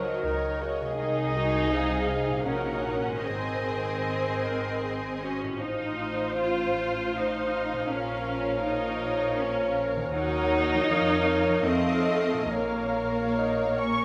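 In a rubato 3/4 at 69-82 BPM, this slow romantic orchestral movement, cut from a longer piece, settles into Bb minor from 5.6 s with a warm, lyrical mood. Muted violins carry the veiled melody while a second violin section and a very quiet clarinet weave supporting lines. Con sordino violas and a warm bassoon provide accompaniment in the background, joined by a dark French horn section holding sustained chords and a ringing fingerpicked concert harp playing arpeggios. The up-front cello section and lush double basses anchor the bass. A pure, hollow silver flute enters only at 13.8 s, and the whole ensemble blooms in a wet concert hall reverb.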